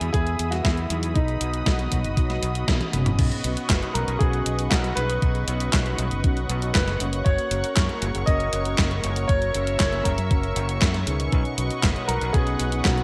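A dark, mellow baby grand piano carries a melodramatic, nostalgic italo disco melody through digital delay from the start, over a lush, warbling chorused unison pad, round brassy synth stabs, a bright fingered electric bass and an up-front, gated-reverb 12-bit drum machine of snare, handclaps, hi-hat, toms and crash, with a thumpy electronic kick joining at 0.1 seconds and a drum fill from 2.7 to 3.2 seconds leading into a Badd9 passage in this bright 1980s-style digital production.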